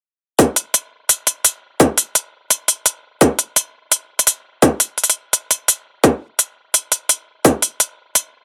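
At 0.4 seconds an electronic kick drum and electronic hi-hat arrive together, setting a dark, tense half-time drum and bass groove with a light swing on the sixteenths. The kick is tight and layered, re-recorded in a small room, with high-pass filtering on both the drum and its room sound, so it sits up front with a lean, clipped weight. The crisp, tape-warm hats share that forward placement, adding a bright, produced edge above the kick. The sound is dry and close, with little reverb to soften the pulse. The kick drops out at 7.5 seconds and the hats carry on alone until 8.2 seconds, closing this short section cut from a longer piece.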